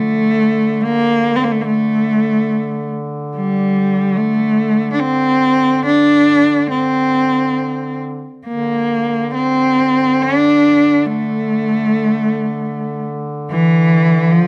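A warm, focused bowed cello sings a longing, mournful melody with vibrato up front over a mellow duduk drone held on D3 throughout this 14.5-second excerpt of a Caucasian folk lament in rubato 3/4 at around 66-75 BPM, captured with close, detailed microphones and light reverb.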